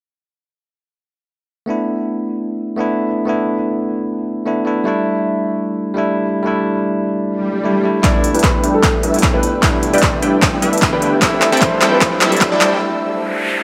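A bell-like tine electric piano opens the piece at 1.7 seconds, clean and up front, with tape echo and a sidechain pumping that breathes against the beat. This is a bright, euphoric future bass track at 151 BPM in 4/4, with a half-time feel and a light swing on the sixteenths. A background swell, riser and noise sweep builds toward 8.0 seconds, where the build-up begins. At that point a dark, mellow concert grand piano carries the melody, a punchy detuned supersaw stab plays a filtered riff, and a fat analog bass sits very quietly underneath. A big-room dance drum kit adds crisp hi-hats and handclaps, while an overdriven electronic kick drum hits hard and up front, followed soon after by a soft, breathy pad holding sustained chords. Moderate lush hall reverb surrounds the mix, the harmony moves from suspended chords to G6 and C6, and a break with a noise sweep arrives at 12.8 seconds and carries the fragment to its close at 13.6 seconds.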